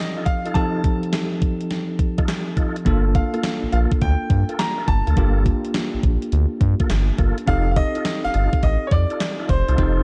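A swung sixteenth-note groove at 104 BPM in 4/4 drives this bouncy, punchy new jack swing excerpt in G minor, cut from a longer piece. A gated 80s digital drum machine enters at 0.3 seconds with a thumpy kick, handclaps, hi-hat and a gated-reverb snare, sitting up front with overdriven, gritty 12-bit sampler character and a small-room re-recorded sound. A bright, brilliant grand piano carries the melody high in the register, while a bell-like, clean tine electric piano supplies accompaniment beneath it. A tonewheel organ adds quieter stabs with audible key click, chorus vibrato and a fast rotary speaker. At 2.9 seconds a round, deep analog bass arrives up front, blending sawtooth, sine and triangle tones into a mellow, evolving, sustained low end as the harmony moves from F7 to Gm9 and back. The overall production is dark and warm, set in a digital ambience.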